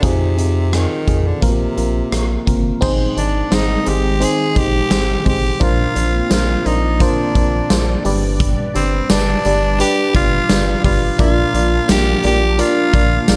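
Romantic and uplifting, this 1980s-style pop excerpt at 86 BPM sets a raspy, gritty tenor saxophone with tape echo up front over glassy, bell-like FM electric piano, a rubbery square bass and a huge, punchy arena drum kit with tambourine and rim clicks, while a swirling phased analog pad enters in the background at 2.8 seconds as the chords move from Fm7 through Ab and G to Bb under light reverb.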